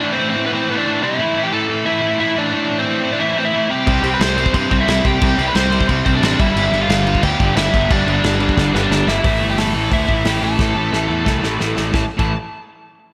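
A biting, overdriven lead guitar carries the melody over a compressed, distorted rhythm guitar riff from the start of this raw, aggressive punk rock excerpt in A minor at 179 BPM, the lead touched by slapback echo and digital delay. At 3.9 seconds a background overdriven garage guitar adds a riff of its own, joined by a growly fuzz bass and a loose, small-room drum kit with a tight kick, medium-tuned snare and dark cymbals. Drum fills arrive at 8.6 and 10.6 seconds as the chords move from C5 and G5 to A5 under light reverb.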